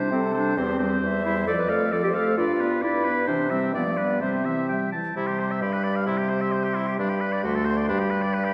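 In a straight 2/4 pulse at 132 BPM, this quick, restless and stormy classical-period wind quintet passage in C major sets an airy, vibrato-touched silver flute melody in the background while a clear oboe carries the second line up front, a soft-attacked, smooth-topped clarinet and a mellow French horn with light vibrato fill in the accompaniment, and a forward bassoon anchors the bass, the ensemble heard from further back in a reverberant scoring stage.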